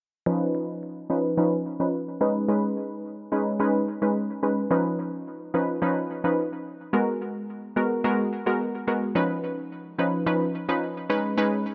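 A lone analog synth pluck, round, detuned and bright with a fast attack and a noise layer, plays from 0.3 to 11.7 s in this romantic, breezy afrobeats fragment at 108 BPM in Db mixolydian, its chorus, delay and an evolving filter sweep coloring Db9, Cb69 and Abm9 chords inside a light digital reverb.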